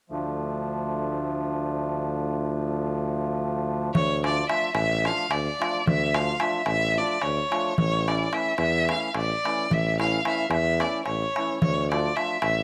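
A rich, smooth violin carries the melody in this fiery, virtuosic fragment of Balkan wedding-band folk, its bowed vibrato line sitting up front in the high register from 3.9 seconds onward. Underneath, a mellow, reedy accordion supplies the accompaniment with a round, cassette-tinted tone, while a clear tuba in classical style holds down the bass with a touch of transformer saturation. The crisp, high darbuka, a small metal-shelled drum heard as if in a small room, enters alongside the violin at 3.9 seconds. The music drives along at 219 beats per minute in a straight 7/8, rooted in D harmonic minor and moving from D minor to A and back to D minor. Light reverb and the character of a home cassette recording give the whole a homespun intimacy.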